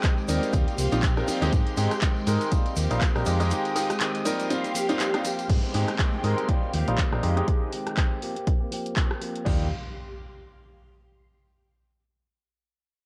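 Funky and feel-good, this filtered disco house passage in Eb major moves at 121 BPM in 4/4 with a swung sixteenth-note feel, cut from a longer piece and coloured by a home cassette recording with light digital ambience. An up-front, punchy analog kick drives the groove beside a layered, tape-warm house kit of hi-hat, handclaps, rim click, tambourine, ride and crash, its hats, percussion and cymbals pumping against the sidechain, while a close, dry tube shaker sits quietly in the background. A dark, round hollow-body electric bass with tube saturation anchors the low end, and a brilliant baby grand piano with short sustain, phaser and 12-bit sampler grit plays accompaniment over a progression that cycles through Eb69, Abmaj7 and Fm9 before reaching Fsus24. Further back, a clean, direct-recorded electric guitar picks a compressed riff, and a swirling, sawtooth string machine with slow attack, ensemble chorus and phaser holds sustained chords. 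The kick drops out from 3.5 to 5.5 seconds, then a filter sweep runs through the next section as a very quiet downlifter and impact enters at 5.5 seconds.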